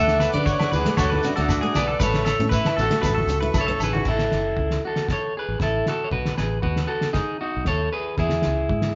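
A live band plays together in one large studio room under a moderate reverb, with a dull, rounded top end, in this sunny, warm highlife piece at 116 BPM, in straight 4/4 and A major. A slightly broken-up, twangy electric guitar sits up front with the melody throughout, over a foam-muted fingered electric bass and a thuddy, cloth-damped drum kit with a fat snare, tight kick and dark, gritty cymbals. At first a bright, clean electric guitar plays arpeggios with vibrato, a picked steel-string acoustic guitar accompanies in the background, and a reedy, shimmering musette accordion holds sustained chords. Grainy shekere, faint ringing agogo bells and low-tuned, saturated congas add percussion beneath them. A drum fill from 3.5 s leads into a new section, and by 4.1 s those parts have dropped away, leaving the lead guitar, bass and drums as the harmony moves from D and A to B7 and E.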